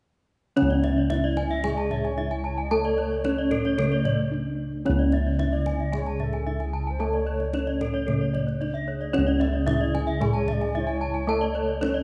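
At 0.6 s this hypnotic, brilliant Balinese gamelan excerpt in C# pelog at 112 BPM sets in at once: bronze metallophones shimmer with paired-tuning beats as a soft, padded-mallet melody rides over a distant wooden-mallet accompaniment and two ringing horn-mallet arpeggio lines, one boxy and the other bright, while dark, round bossed gongs sit up front on the bass, a tight kendang played with the hands stays in the background, a mellow bamboo bansuri with chiff and unsteady vibrato joins at 1.5 s, and a brief break at 4.1 s interrupts the light reverb-tinged flow of this passage cut from a longer piece.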